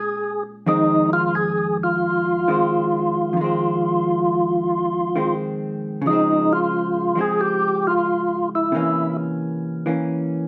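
A smoky, soulful jazz excerpt opens on a moderate studio reverb that gives the two up-front parts a close, intimate room. A percussive tonewheel organ carries the melody in a narrow middle range, its fat, lightly overdriven tone marked by second-harmonic percussion, key click, chorus vibrato and a slow rotary speaker. Beneath it, a vintage hollow-body jazz guitar supplies accompaniment across a lower span, sounding dark, clean, picked and compressed. The swung 4/4 feel moves through minor-seventh harmony, settling on a major-seventh colour before a tense dominant chord near the end. The organ stops at 9.2 seconds, leaving the guitar alone until the fragment closes at 10.5 seconds.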